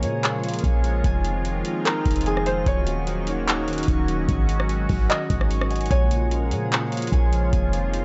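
Spacious and melancholic, this atmospheric cloud-rap hip hop excerpt in Bb minor moves at 148 BPM with a half-time feel, as a booming analog drum machine with deep kick, metallic hats, handclaps and rim click sits up front beside a clean, boomy 808-style sine bass, while a felt-muted upright piano carries a soft, intimate melody through digital delay until 7.5 seconds over a detuned sawtooth pad with chorus, ringing fingerpicked harp arpeggios, and a glassy texture of drifting overtones in the background, all cycling through Bbm7, Fm7, Ebm7 and Ab7sus4 in a light digital ambience.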